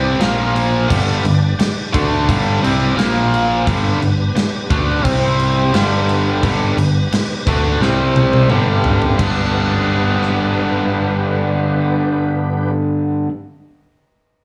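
Swaggering and driving, this blues rock and southern rock excerpt in G mixolydian moves at 87 BPM, with a biting, double-tracked overdriven guitar riff up front over a growly fretless bass, a punchy big-room drum kit with crash, toms and rim clicks that plays a fill from 7.8 to 9.2 seconds before dropping out at 10.4 seconds, and a gritty tonewheel organ holding sustained chords through a slow rotary speaker and chorus vibrato in the background, all set in a moderate large studio reverb.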